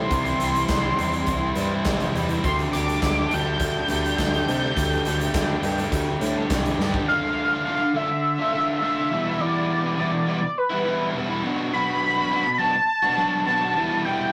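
A straight 4/4 groove at 103 BPM drives this upbeat, jangly indie rock excerpt, with a big acoustic drum kit, punchy and up front, and a growling, overdriven picked electric bass under a crunchy, double-tracked electric guitar riff. A bold, retro octave-doubled synth lead with detuned sawtooth tone, chorus and vibrato carries the melody over a very quiet, swirling phased analog pad, while a soft, bell-like glockenspiel played with rubber mallets adds a faint second line from 2.4 seconds. After a drum fill at 6.8 seconds, the drums, bass and pad drop out around 7.1 seconds, leaving the guitar and lead over minor-flavoured chords in a rough, saturated rehearsal-room sound.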